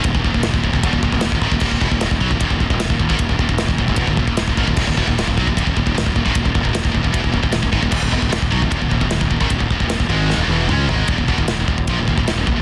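Relentless and heavy, this 12.6-second heavy metal excerpt drives forward at 152 BPM in a straight 4/4, built on an Eb5 power chord. A scooped, high-gain electric guitar carries the riff, its bright, distorted, double-tracked tone picked and placed up front across a range from Eb2 to Db4. Beneath it, a fingered electric bass growls with fuzzy overdrive, punchy and direct from Eb1 to Db2. The acoustic studio drum kit sits mid-forward with a punchy kick, a medium-tuned snare, toms and bright crash and ride cymbals, and it plays a fill from 10.3 to 11.1 seconds that sets up a brief new section closing the clip. The sound is a dense, heavily limited modern master with a studio ambience.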